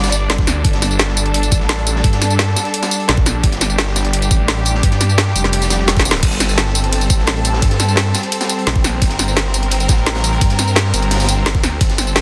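This excerpt of dark, technical drum and bass opens on a G5 chord in G minor, with a rich, bowed studio string section holding smooth, evenly sustained chords with light vibrato while a sidechain pumps against it. Underneath, a snarling distorted saw bass sits up front, aggressive and growling, its detuned unison sawtooth layered with sine, a moving notch and tube saturation giving it a compressed, distorted bite. The main drum and bass kit drives the 172 BPM straight 4/4 groove with a woody snare, bright hats, crash, ride and tambourine, all overdriven. A very quiet breakbeat kit adds a dark, rolled-off, small-room texture of hi-hat and snare beneath it, and an overdriven, knocking electronic kick joins at 0.4 seconds. A brief drum fill at 5.9 seconds breaks up the futuristic, tense momentum, all set in light small-room reverb within a dense, heavily limited modern master.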